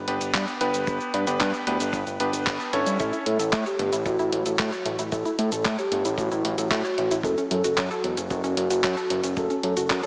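Sunny and playful, this italo disco excerpt at 113 BPM in A mixolydian rides a fat, nasal, saturated analog bass, a tape-warm 12-bit drum machine with cabasa, handclaps and hi-hat, and a dry, tight kick, while bright, clangy electric grand piano stabs fill the opening until 3.2 seconds. Just before that, at 3.0 seconds, a soft, round octave-layered synth lead with phaser and vibrato and a background analog pluck arpeggio with sampler grit enter, all bathed in a dreamy hall reverb with a small-speaker sound over chords moving from G to A to F#m.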